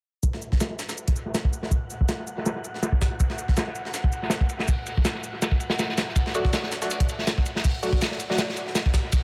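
Frenetic and atmospheric, this drum and bass jungle excerpt at 162 BPM in 4/4 with a light 16th-note swing pairs a saturated, up-front breakbeat kit of tight kick, medium-tuned snare, dark cymbals and a rolled-off top with a quieter, compressed sampler-style layer of high-tuned snare, hi-hat and shaker, both under a filter sweep and dub echo from 0.2 seconds, while an airy, wind-like tuned noise texture breathes in the background from 1.0 seconds and a nasal, detuned sawtooth chord stab, band-passed with chorus and phaser, lands on D from 6.3 seconds in an echo-heavy mix with light studio reverb.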